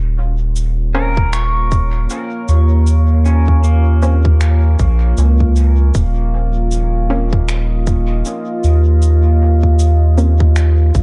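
A swung 78 BPM groove in 4/4, driven by a tight, up-front electronic kick from 1.2 seconds and tape-toned electronic cabasa and finger snaps trailing dub echo, anchors this deep, meditative ambient dub excerpt over a Bbm/Eb chord, where a round analog bass sits forward from the start, a dark, detuned sawtooth pad with chorus and reverb sustains, a muted, filtered chord stab with chorus and dub echo decays in the background, and a clean, fingerpicked pedal steel guitar with slide and volume swells plays echoing arpeggios until 7.5 seconds, within an echo-heavy mix.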